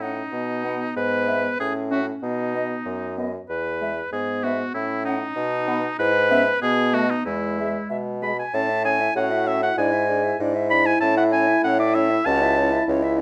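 Lively and graceful, this brief excerpt from a quick classical-period movement for wind quintet in 2/4 sets an airy, distant silver concert flute carrying the melody in the background while a clear, close-miked oboe with light vibrato sings an up-front second line. A dark, smooth-topped clarinet and a mellow, punchy French horn with a roomy sound fill out the accompaniment, and a soft-attacked bassoon anchors the bass close at hand. At 8.5 s the music moves to a new key for its second section, all within light reverb.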